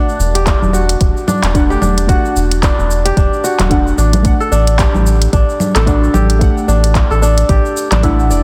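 Organic downtempo at 111 BPM in E minor, this hypnotic, warm-toned fragment of a longer piece rests on a single Em9 chord, with a soft, wave-folded chord stab sitting dark in the background under chorus, phaser, sidechain pumping and digital delay, while a crisp, fingerpicked kora rings out arpeggios through its own delay. A round, nasal analog bass with tube saturation sits up front from 0.2 seconds, and a swung 16th-note groove from an overdriven organic electronic kit of congas, handclaps, smooth hi-hat and shaker is joined at 0.5 seconds by a deep, overdriven electronic kick, both re-recorded in a large room. The dense, heavily limited mix carries little reverb.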